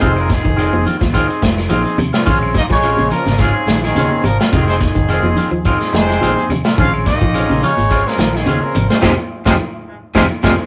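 An excerpt from a longer afrobeat piece opens with the whole band already in motion at 107 BPM in 4/4, a lightly swung sixteenth-note groove that feels funky and hypnotic as the chords move between Fm7 and Bbm7. A crunchy, saturated breakbeat kit sits up front with a tight kick, medium-tuned snare and hi-hat, joined by close, dry congas with hard hands, a grainy shekere barely heard, and faint, distant woody claves entering at 0.2 seconds. A dark, round fingered electric bass anchors the low end, while a twangy clean guitar plays stabs and a second guitar at the edge of break-up spins arpeggios in the background alongside a buzzy, overdriven vintage combo organ with spring reverb. A breathy, whispered trumpet carries the melody with a soft attack and light vibrato, shadowed by a punchy trombone with scooped notes and tape echo and a very quiet, raspy baritone saxophone. The rough rehearsal-room sound has a dulled top end and a modest booth ambience, and the band hits a shared accent on an F7(no3) chord from 9.0 seconds to the close.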